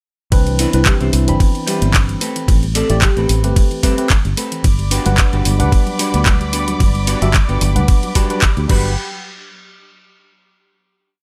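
Groovy and sunny, this short nu-disco piece rides a gritty, thumpy four-on-the-floor kick set up front, with a layered house kit adding a disco backbeat of handclaps, hi-hat, ride and crash. A dark, round fingered electric bass plays a syncopated riff up front, while a tine electric piano with slapback echo punches out syncopated chord stabs over Cmaj9, Am9 and Gmaj7. A clean semi-hollow electric guitar, given lush chorus and slapback echo, carries a funk chord rhythm in close voicing, and a very quiet, gentle pluck spins a 16-step arpeggiated sequence beneath. From 0.6 s to 3.4 s a soft, detuned octave-layered synth lead sits in the background, coloured by chorus, phaser and tape echo, and at 4.6 s a rich bowed string section enters with sustained vibrato chords shaped by sidechain pumping. The mix is dry, closing on a final hit.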